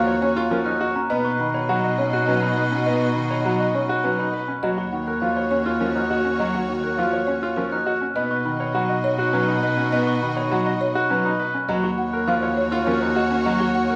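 In a moderate recital hall ambience, this propulsive, bright excerpt of minimalist classical pattern music in 3/4 sets a woody, rustic marimba melody over a distant clarinet second line, a brilliant piano accompaniment, lush bowed violin chords with vibrato, polished arpeggios from a second, clear-toned piano and a bell-like glockenspiel, and a rich, expressive cello bass with portamento, all cycling between Ebm7 and B.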